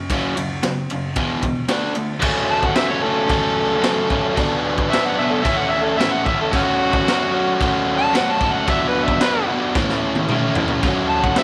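A biting, double-tracked overdriven guitar opens this menacing garage rock cut at 112 BPM in F# minor, picking a riff over F#5, E5 and D5 chords, as a raw, saturated drum kit with a high-tuned snare and punchy kick pumps up front in a small room. At 2.5 s an amplified harmonica takes the solo melody, overdriven and gritty, with light vibrato, tongue slaps and tape echo, while the chords cycle through F#m, Bm and A. A drum fill arrives at 9.7 s before the passage cuts off, the whole mix sitting in moderate plate reverb.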